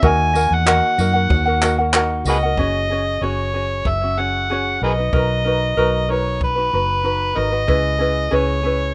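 A straight 4/4 groove at 94 BPM is set by a brushed jazz drum kit with a boomy kick, handclaps and tambourine in a natural small-room sound, and the kit drops out at 7.8 seconds. This short, reflective and wistful acoustic pop fragment, cut from a longer piece, rests on a dark, foam-muted vintage electric bass that sits round, punchy and up front. A bright, light ukulele is fingerpicked as accompaniment, while a full-bodied dreadnought steel-string guitar picks arpeggios in the background, finger squeaks and all, before stopping at 3.1 seconds. Out front, an amplified, gritty, overdriven harmonica carries the solo melody in a pop style, with vibrato, tongue slaps and scooped notes. The harmony moves from D#m to F#sus2, Bmaj7 and C#m7, with the shift to a new section at 2.6 seconds, all wrapped in light reverb and a rough, home-demo mix with a dull top end.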